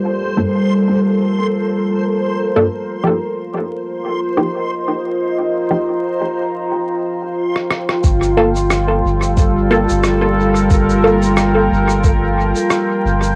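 A crackling home cassette recording in a small booth carries this spacious, hazy ambient dub excerpt, where a moody, detuned sawtooth pad with chorus and reverb sustains Gm9 and F7sus4 chords under a filter sweep, a reversed granular texture drifts dreamily until 6.7 s, bright, wave-folded chord stabs pass through phaser and dub echo, a compressed rim click and shaker enter at 7.6 s, and after a drum fill a thumpy, muffled kick and a round, soft sub bass arrive at 8.0 s.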